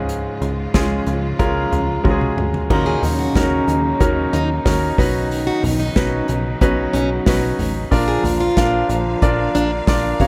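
Piano-driven pop in Eb minor at 92 BPM, bittersweet and earnest, where an up-front, clear concert grand with deep bass and short sustain carries the accompaniment over lush bowed strings in the background, a punchy, plucky analog bass, and an airy acoustic drum kit played with bundle sticks whose fill at 2.0 seconds brings in a mellow, tightly blended French horn section and a dark, picked steel-string acoustic guitar riff, all within light reverb as this cut from a longer piece moves from Db through Ebm7 and Badd9 to Bb.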